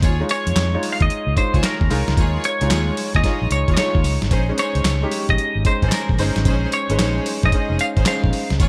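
A swung 112 BPM groove in 4/4 drives this confident, punchy new jack swing fragment in B-flat minor, built on a gritty, up-front sampler-style kit drenched in gated reverb, with a thumpy kick, handclaps, tambourine, hi-hat and snare, plus a dark, round, foam-muted fingered bass. A warm, open baby grand piano with subtle chorus comps underneath while a distant, lush string section adds bowed stabs over an Eb9sus4 that moves to Bbm11 at 4.3 seconds. From 0.3 seconds a twangy, scooped clean electric guitar carries the melody through analog chorus and digital delay, all within a bright 1980s-style digital mix with light reverb.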